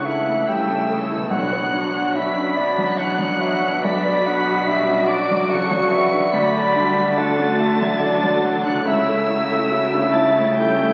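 A full orchestra opens at once in this bittersweet, sorrowful film-score fragment in B minor, moving in a slow, rubato 3/4 around 72 BPM. High violins carry the melody with a smooth, even vibrato, while a mellow, vintage-toned clarinet, an airy silver flute and a second, lush violin line weave supporting voices beneath it. A soft, felt-muted upright piano, intimate and vintage with its action noise audible, shares the accompaniment with a rich viola section, as mellow French horns hold sustained chords in the background and a very quiet concert harp rings out arpeggios. Cellos and double basses anchor the low end with bowed tones, the basses' notes shaped by a soft attack, and round, soft-mallet timpani touch in only from 1.3 to 2.5 seconds. The harmony drifts from A/C# to Bmadd9, then D, and back to A/C#, all bathed in the wet reverb of a scoring stage and colored by the crackle of a very old 78 rpm record.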